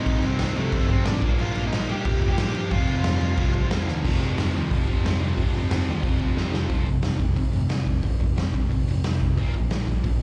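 A straight 4/4 pulse at 180 BPM powers this rowdy, energetic punk rock excerpt, with a raw garage drum kit up front: punchy kick, medium-tuned snare, hi-hat and crash in a bright stone room, rounded by a rolled-off top, with fills at 3.9 seconds and again just before 6.7. A growly, amped picked bass sits beneath a stack of overdriven rhythm guitars: a sludgy one and a distorted one riffing in the background throughout, plus a very quiet, double-tracked crunchy part that drops out at 6.7 seconds. A dark, smooth lead guitar carries the melody only through the opening 3.7 seconds, and the whole performance sounds like a live gig heard through a venue's PA, soaked in club reverb.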